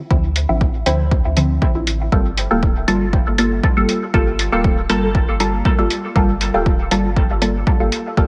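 A muted, detuned chord stab sits up front in this hazy dub techno excerpt, its sawtooth-and-square tone plucked by a filter, coloured by phaser and trailed by dub echo while a filter sweep runs across it from start to finish. The hypnotic groove moves at 119 BPM in a straight 4/4, with the stabs pumping against a punchy, layered kick that sounds re-recorded in a small room and sits forward in the mix. Beneath them, a round, soft sub bass blends triangle and square waves with a fast attack and sustained notes, sharing the same sidechain pumping. A compressed, pitched-down hi-hat arrives at 0.4 seconds, muffled and tape-softened. At 2.1 seconds, a crisp, warbling wavetable stab enters in the background, with unison detuning, a moving notch and dub echo, as the harmony shifts from Dm9 to Gm9 under light reverb and a gently rolled-off top end.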